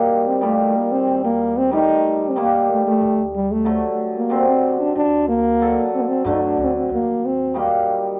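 Klezmer in triple metre, bittersweet and soulful, this brief cut from a longer piece sets a dark, classically styled solo French horn up front over shimmering, hammered cimbalom accompaniment, while a woody pizzicato upright bass joins at 1.1 seconds, sitting low in the mix, and the trio sounds in a small room with moderate reverb.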